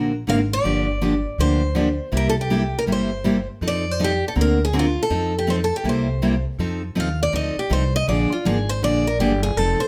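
Acoustic string swing in the jazz manouche style, this lively, charming excerpt moves with a swung eighth-note feel in 4/4. A picked steel-string acoustic guitar with a bright, boxy parlour tone carries the accompaniment throughout, while an upright bass with gut strings supplies a woody, thumpy pizzicato foundation, both sitting up front. From 0.3 seconds, a second picked steel-string guitar, a full-bodied dreadnought with fresh strings, takes the melody, its sound dressed in plate reverb. The harmony moves through seventh-chord colours such as Daug7, Gm7, C7 and F7, and at 6.6 seconds the piece shifts to a new section where this guitar steps into a solo over F7 and Bb7. A moderate studio room ties the trio together, and the clip is cut from a longer performance.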